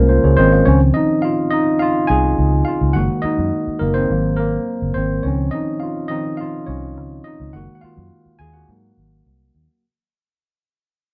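A barky tine electric piano, worn, slightly out of tune and lightly overdriven through a combo amp, takes a solo from 0.7 s to 9.8 s while the music fades out over that same stretch in this romantic, lush 1970s-style soul excerpt at 105 BPM in Db major. Beneath it, a dark, round, foam-muted fingered electric bass sits up front as the harmony cycles through Dbmaj7, Gb6 and Ab7. The band plays live in one room with moderate studio reverb, and the passage is cut from a longer piece.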